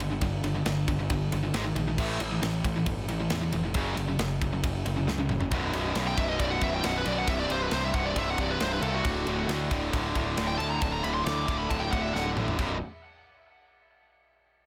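Light reverb surrounds a polished, airy studio drum kit and a fuzzy, overdriven picked bass set up front, while two bright, overdriven electric guitars play riffs in the background of this epic, heavy metal excerpt. The drums cover kick, medium-tuned snare, toms, crash and ride, with fills at 5.1 s and again at 12.1 s. From 6.1 s a dark, high-gain lead guitar with distortion and tape echo plays a solo over the heavy riffing.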